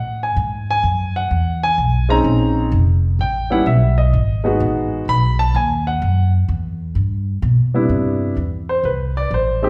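Relaxed and sophisticated, this short excerpt of a swinging jazz piano trio moves at 127 BPM in E major, with a warm, present grand piano carrying the melody over a woody, pizzicato upright bass, both sitting up front amid a wet large-studio reverb that places the listener further back in the room. The harmony drifts through colorful chords such as Eadd9, A#m11, A7sus2 and G#m7 before landing on G and then Cmaj7 at 7.9 seconds, where the piano takes a solo until 9.7 seconds, its long sustain blooming in the room.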